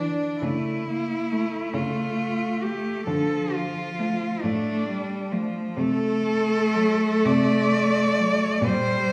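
This classical excerpt for cello ensemble moves in 6/8 with a free, rubato feel, its mood yearning and melancholic. Four bowed cellos, each a single player, share the texture. Up front and close, the melody cello sings with a rich, expressive tone, soft attacks, vibrato and gliding portamento. Beside it, an intense accompaniment cello with a smooth top and vibrato fills the middle, while a focused bass cello, also with vibrato, anchors the low end. In the background, a distant, clear second line adds a focused, vibrato-laden voice before dropping out at 8.5 seconds. The harmony passes from A/C# through Dm to D7/C, and a wet recital-hall reverb wraps the ensemble in the resonance of a church or concert hall.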